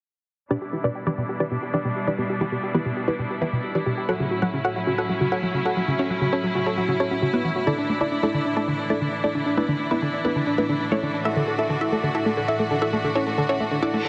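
Trance at 134 BPM in D major, uplifting and soaring, cut from a longer piece. A punchy, detuned unison pluck carries the melody up front with a digital delay, while a string section with light vibrato and a biting, earthy edge holds sustained chords beneath it through a low-pass filter. A tight, nasal sequenced synth drives arpeggios with chorus and its own delay, and all three parts play from 0.5 to 14.1 seconds under filter sweeps. The harmony moves from G6 to F#m7 at 4.1 seconds and then to Dsus2 at 7.7 seconds. A brief electronic reverse cymbal appears at 13.9 seconds. The mix sits in a lush hall reverb with a heavily compressed, radio-like sound that rolls off the top end.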